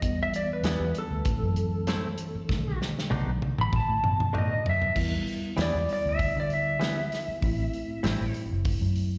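A twangy, up-front lap steel melody with slapback echo and plate reverb opens this smoky, mournful straight-eighth soul blues over mellow tine electric piano, a round, dark muted bass and a tight, mid-forward soul drum kit, with bright, direct-recorded clean electric guitar stabs entering at 0.6 seconds, a drum fill from 2.5 seconds and an electric slide guitar solo from 5.0 seconds, all heard as a live gig through the venue's PA in recital hall reverb.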